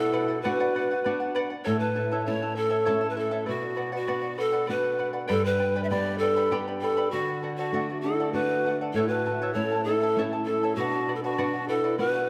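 Breathy, bright cane pan pipes carry the melody up front in this cut from a longer Andean folk piece, their soft attack, audible chiff and gentle vibrato giving the tune a festive yet wistful air. Set in B minor at 99 BPM in a straight 3/4, the ensemble moves through chords of Bm, A, G and D. A mellow, end-blown wooden quena plays an expressive, tongued second line with its own vibrato. It sounds at the opening, drops out at 1.3 seconds, and returns at 8.0 seconds. Accompaniment comes from a fingerpicked charango, whose double strings, some doubled at the octave, add a shimmering sparkle, and from a warm, fingerpicked flamenco guitar with fresh strings filling in the lower register. A wet concert hall reverb with a 2.3-second decay surrounds the ensemble, and both wind instruments carry a distant quality.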